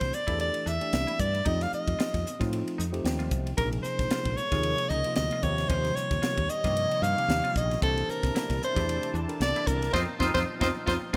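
Slick and funky, this short electric jazz fusion cut swings lightly in 4/4 with a bright 1980s-style digital sheen, as an up-front soprano saxophone carries the melody with vibrato, subtone and scooped notes over a tine electric piano with phaser and a woody, round fretless bass. A crisp drum kit with a punchy kick, high-tuned snare, dark cymbals and gated reverb drives the groove, while a twangy picked guitar adds background stabs through lush chorus and delay. The electric piano plays a fill at 2.8 seconds, a very quiet sawtooth pad with a slow attack and a filter swell enters at 3.6 seconds, and the band hits an accent at 9.9 seconds over rich extended chords.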